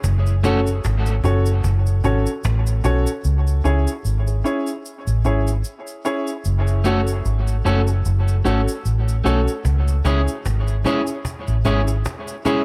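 Hypnotic and spacious, this dub reggae excerpt sits on a swung 4/4 groove and moves between F# minor and C# minor chords. A dark, round, foam-muted fingered electric bass sits up front and carries the low end until it drops out at 12.0 seconds. Upright piano stabs, woody and up front, begin at 0.4 seconds and trail off into dub echo, while a picked electric guitar at the edge of break-up flickers briefly near the start before returning at 6.8 seconds with its own echoing tail. In the background, a cajon with faint snares plays in two stretches, falling quiet after 3.2 seconds and coming back at 9.6 seconds. A small-room cabasa, with a maraca-like rattle and a handclap texture, ticks along throughout, and the echo-heavy mix is wrapped in light reverb and small-room ambience.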